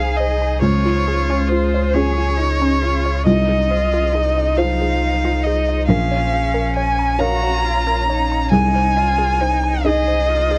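Moving in a rubato 6/8 at about 46 dotted-quarter beats per minute, this fragile, longing neoclassical piece for piano and strings unfolds in Bb minor, cut from a longer work. An up-front violin carries the bowed melody with smooth vibrato, while a distant, rich cello sings a second line beneath it. A felt-muted upright piano gives dark, intimate accompaniment with short sustain and audible action noise, and a clean, deep sine sub bass sits up front underneath. In the background, a cloudy granular pad holds blurred, detuned chords with built-in reverb, and a squelchy, resonant blip pluck with chorus traces arpeggios. The harmony moves from Ab/C through Db, Fm7/C and Bbm before returning to Ab/C at 8.5 seconds, all under light reverb and the worn, warbling pitch drift of old cassette tape.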